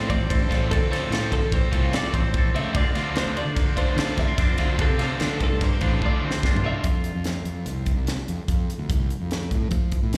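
A live-gig sound heard through the venue's PA, with recital-hall reverb, frames this playful, intricate excerpt of math rock and midwest emo, moving at 147 BPM in 5/4 in F major over F/A, Dm7 and then F5. A bright, twangy electric guitar with slapback echo plays accompaniment beside a compressed twelve-string electric guitar spinning arpeggios through tape and slapback echo, while a double-tracked, overdriven guitar carries a crunchy riff. Up front, a round, dark fuzz bass with overdrive and a gritty fusion drum kit with a high-tuned snare and punchy kick hold the low end, a drum fill at 6.0 seconds leads into a new section at 6.8 seconds where the riff and the twelve-string stop, and the bass and drums play on to the end.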